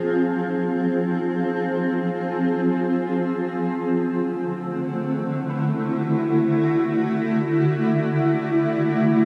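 Ambient music in free time, spacious and melancholic, cut from a longer piece and tuned to A4 = 444 Hz, moving from Fm to D7 at 3.7 seconds. An up-front granular cloud pad holds sustained chords through the full 9.2 seconds, its blurred, detuned tone with slow attack and long release spread out by built-in and shimmer reverb. Far beneath it, very quiet muted felt-like synth keys play dark, intimate arpeggios with chorus and a filter sweep, all set in a cathedral reverb with a cassette-tape colour.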